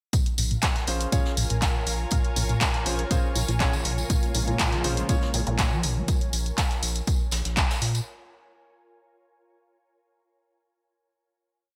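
A punchy four-on-the-floor electronic kick, placed up front with the sound of a large room, drives this hypnotic acid house groove in Bb minor at 121 BPM. It is joined by an analog drum machine's claps and hats under gated reverb, and by a looped, edited brush breakbeat of hi-hat, high-tuned snare and tambourine that sits in the background with pumping, filtered hats. A rubbery, resonant acid line with slides runs under a filter sweep as a round off-beat bass pumps beneath it, and clear grand piano stabs, syncopated and echoed by delay, arrive at 0.9 seconds over a Bbm7 chord. An ethereal, detuned pad of slowly shifting chords floats above, and a smooth sawtooth pad adds sustained chords from 4.1 seconds, in light small-room ambience with a bright 1980s-style digital sheen.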